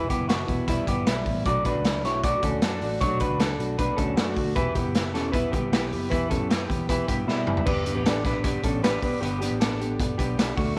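Jangly indie pop at 155 BPM in 4/4, wistful and restless, cut from a longer piece and moving from Em through Bm7 before lifting to G at 7.7 seconds after a drum fill. A slightly broken-up electric guitar through a small old amp plays up-front arpeggios over a full-bodied fingerpicked steel-string acoustic with fresh strings, while a foam-muted, round, punchy electric bass anchors the low end. A gritty, saturated garage drum kit with a boomy kick and rolled-off top sits up front in a pumping small room, and the mix is bathed in a moderate echo chamber reverb.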